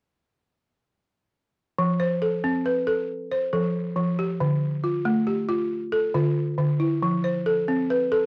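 West African traditional music in a hypnotic, joyful 12/8 at 91 BPM, this short cut from a longer piece features a lone balafon struck with rubber mallets, its woody, buzzing arpeggios sitting up front from 1.8 to 8.3 seconds, ranging from D3 to C5 over F, Dm and F in F Lydian, with cassette tape character and a moderate studio reverb on a home recording.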